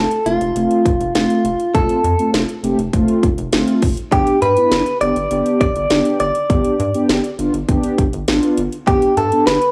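A clean electric guitar, recorded direct and sitting up front, carries the melody with a bright, picked tone trailed by tape echo. This short synth-pop excerpt moves in a straight 4/4 with a bright yet wistful mood, its harmony shifting from F to G at 4.1 seconds. Beneath the guitar, a mellow synth brass pad built from detuned sawtooth waves adds round, full-bodied chords, thickened by chorus and a touch of vibrato. A rubbery square-wave bass bounces along with a resonant filter pluck and a hollow, slightly wave-folded character. An electronic house drum kit, layered, tape-warm and re-recorded in a small room, drives the groove with a punchy kick, a cracking snare and metallic hi-hats. The whole mix has a dry, gritty hardware feel with light reverb and a hint of small-room ambience.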